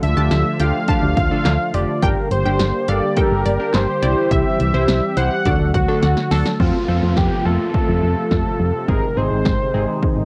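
A melancholic, cool synth-pop excerpt at 105 BPM opens with an octave-doubled lead carrying the melody over a sweeping resonant pad, a solid FM bass and a punchy analog drum machine of kick, snare, hi-hat and handclaps. The lead is bold and retro, its bright sawtooth and triangle tone warbling with vibrato and chorus, while the airy, detuned pad evolves slowly beneath it with a filter swell and a breath of noise. The round, dark FM bass sits up front, and a funky polysynth comp with a filter sweep joins almost at once alongside a lush, wave-folded unison pluck that stays in the background with analog delay until 6.4 s. The harmony moves from Dm through Gm and C to D, and a drum fill at 6.0 s leads into a passage on F and Ab where an electronic downlifter enters at 6.6 s. The tape-tinged home recording sits in a short, moderate booth ambience, with a gentle cassette warble on the lead, pad, comp, pluck and drums.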